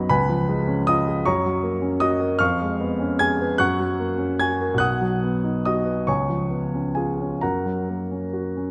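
This is a romantic classical character piece for solo piano, hopeful and warm in mood, drawn from a longer work. It moves in a gently flexible 6/8 at roughly 43-54 BPM counted in dotted quarters, with a rubato that lets the phrases breathe. A single warm baby grand carries the whole 8.7 seconds, spanning from B1 up to B6 with a polished, present tone and a long sustain that sits up front in the sound. The harmony stays rooted in F# major, rocking between C#7 and F# before touching B and returning through C#7 to settle on F# at 7.4 seconds. A moderate concert hall reverb, with a 2.3-second decay, surrounds the instrument in a gracious, spacious glow.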